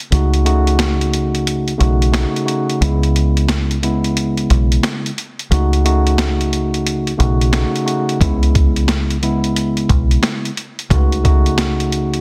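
A gritty, compressed sampler-style kit opens this dark, tough boom-bap hip-hop excerpt at 89 BPM, its thumpy kick, medium-tuned snare and hi-hat swung on the 16ths and sitting up front with vintage 12-bit crunch. A mellow tine electric piano, filtered and tape-coloured as if heard through its built-in speakers, alternates between B7/C# and C#m7, while a deep, round, foam-muted fingered bass holds low underneath. A break runs from 0.0 to 8.2 seconds, and the whole track carries light reverb and a dense, heavily limited modern master.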